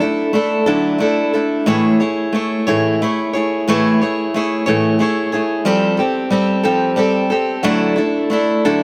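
A 6/8 pulse moves at 60 beats per minute, counted in dotted quarters, with a straight feel. This short rock passage in A major runs 8.8 seconds, taken from a longer piece, and carries a jangly, nostalgic mood. A picked steel-string acoustic guitar plays solo throughout, sitting up front with a warm, concert-ready tone and spanning A2 to C#5. An analog delay trails its notes, and light reverb gives the sound a sense of space. The harmony opens on Dadd9, settles onto Amaj7 at 1.7 seconds, shifts to Fadd9 at 5.7 seconds, and returns to Dadd9 near the end.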